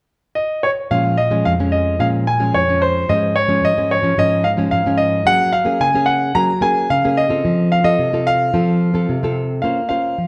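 A straight 4/4 samba groove moves along at 110 BPM in Bb minor, giving this short cut from a longer piece a yearning yet lively mood. A clear concert grand piano opens at 0.4 seconds with the melody, sitting up front with a polished, present tone and deep bass, its line ranging from C5 to Bb5. At 0.9 seconds a fingerpicked nylon-string guitar joins as accompaniment, dark and classical in character, with audible finger squeak and a range from F2 to C5. The harmony moves through Bbm7, Db/Ab, Gbadd9 and F before settling on Bbmadd9 at 9.6 seconds, near the close. Both instruments sit close to the listener inside a moderate large-studio reverb that lends the pair an open, spacious air.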